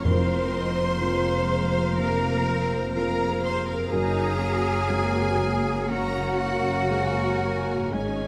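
Cinematic, emotional film score for orchestra, sorrowful and bittersweet, moving in a free rubato over an Fsus4 that shifts to Gbadd9 at 3.9 seconds, in what sounds like a fragment of a longer cue. A lush, vibrato-rich violin section carries the melody in the background, while a second violin section, a hollow, pure flute, a vintage-toned cor anglais and a dark, distant clarinet weave secondary lines above bright, intense violas, a mellow French horn section holding chords, a softly ringing fingerpicked harp, and a thick-felted upright piano whose action noise can be heard. Clear, focused cellos and double basses sit up front as the bass, hard-mallet timpani strike articulate notes until 1.5 seconds, and a moderate scoring-stage reverb surrounds the ensemble.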